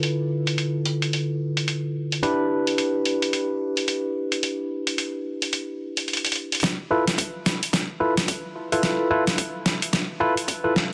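A barky, bright tine electric piano jabs out stabs with sidechain pumping, tape echo and a filter sweep over gritty, pitched-down boom bap sampler-style drums of hi-hat and snare in this funky, swaggering glitch hop excerpt, its swung groove turning to a build-up and drum fill at 6.6 seconds, where a punchy, layered electronic kick drum joins under a moderate plate reverb and a dense, heavily limited master.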